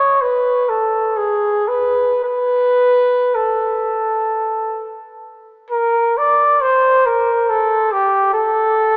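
A church reverb with a long 3.6-second decay wraps this short excerpt, heard through a small-speaker sound. It is a classical piece for a single unaccompanied trumpet in A minor, moving freely in 3/4 with rubato phrasing and a tempo that drifts between 40 and 71 BPM. The mood is mournful and lonely. The trumpet sits up front with a punchy yet roomy tone, singing in a narrow span from G4 to D5. An opening passage gives way to a new section at 5.7 seconds, and the solo line carries on alone until the cut at 9.0 seconds.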